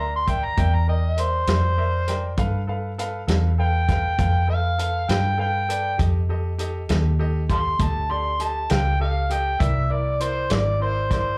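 Heard through a club PA with a touch of room reverb, this short cut from a longer slow blues in 12/8 at 66 BPM has a swaggering, laid-back mood in C mixolydian. An overdriven, gritty amplified harmonica carries the melody as a jazz-style solo from the opening second, with light vibrato, tongue slaps and a slapback echo up front. Beneath it, a bright upright piano adds brilliant, woody accompaniment with audible action noise and short sustain, also touched by slapback echo. A vintage muted fingered electric bass gives a dark, round, foam-muted tone, while a soul drum kit enters at 0.3 seconds with a punchy kick, medium-tuned snare and hi-hat, its sound tight, mid-forward and rolled off on top. The harmony moves from C7 to G7, then to F7 at 6.0 seconds, and returns to C7 at 9.6 seconds.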